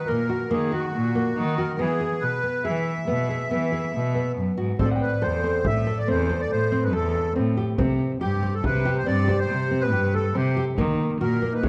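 This excerpt of contemporary chamber music opens with a reedy, sweet accordion carrying the melody up front, a light tremolo tuning giving it a shimmering edge. Beneath it, a full-bodied nylon-string guitar fingerpicks arpeggios while a single bowed cello holds the bass with a biting, earthy tone and light vibrato. The pulse is a restless 7/4 at 140 BPM with a straight feel, and the harmony moves from D#m to E before shifting to Am7 at 4.8 seconds. At that point a deep, dry frame drum enters under soft hands, and a moment later, at 4.9 seconds, a harp-like synth pluck adds ringing, mellow texture in the background, colored by chorus and a long release. The whole excerpt sits in a dark, warm production with the wet glow of a recital hall around it, passing through C5 and returning to D#m near the close.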